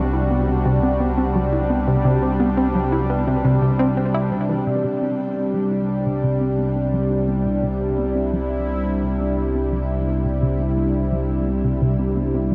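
A steady, straight 4/4 pulse at 86 BPM drives this expansive, luminous piece of ambient, sequencer-driven space music in C lydian, resting on a Cmaj7 chord from the start. Up front, a sweeping resonant pad holds sustained chords from C3 to F#4 with bright, detuned sawtooth tones, a slow attack, long release and chorus, evolving through its filter swell. Beneath it a round analog bass sits on a deep C2, its dark, sine-like body steady throughout. In the background a tight sequenced synth plays a driving riff from C3 to E4, its mellow, detuned sawtooth and square tones shaped by a filter pluck, with chorus and analog delay, and a filter sweep moves over this arpeggio sound during the first 4.7 seconds before the music passes into a new section. A huge, wet reverb with an 8.3-second decay surrounds the whole excerpt, cut from a longer piece, with a vast, glowing sense of space.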